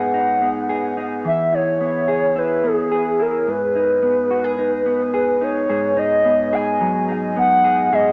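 A hollow, woody clarinet-like synth lead carries a soft, sustained melody with vibrato over the dark, clean fingered arpeggios of a mellow electric guitar from the first moment of this ethereal, hazy dream pop fragment in G# minor at 108 BPM, with both parts treated with chorus and dub echo and set in a wet spring reverb and an echo-heavy, small-speaker sound as the chords move from G#m7 through E and G#m before a new section opens on G#m7 at 5.7 seconds.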